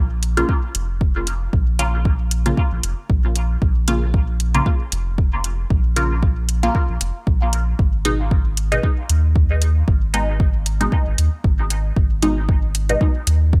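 Dub techno with a hypnotic, nocturnal mood, this short cut from a longer piece moves in 4/4 with a lightly swung sixteenth-note feel. A soft, round sub bass opens at 0.0 s and sits up front, its fast attack and sustained tone breathing with sidechain pumping. Metallic, tape-tinged electronic hi-hats join almost at once. At 0.4 s a filtered dub chord stab arrives, muted yet bright, with detuned, wave-folded, resonant character and a short plucked decay, steeped in phaser and dub echo and also pumping against the kick. A deep, layered kick drum follows at 0.5 s, the loudest part and placed firmly forward. The harmony shifts from Bbm to Abm at 7.8 s, all set in a digital ambience.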